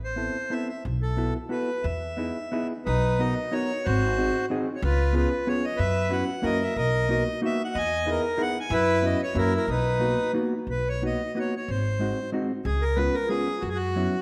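A reedy accordion carries the melody up front in this nostalgic, whirling musette waltz, cut from a longer piece and set in B major at a brisk 184 BPM in 3/4. Its line sits between D#4 and G#5 and moves with a swung, rubato lilt that keeps the dance feeling loose and sentimental. Beside it, a woody pizzicato upright bass with steel strings stands equally forward, anchoring the low end from G#1 to F#2. A dark, clean electric hollow-body jazz guitar, played with the fingers, enters at 0.2 seconds and fills in the accompaniment at a slightly lower level. The harmony opens on Amadd9 and cycles through rich seventh chords such as Bmaj7, G#7, C#7 and F#7sus4, with a contrasting passage beginning at 2.9 seconds and recurring at 10.7 seconds. A generous recital-hall reverb surrounds the trio, lending the small ensemble an airy, lingering glow.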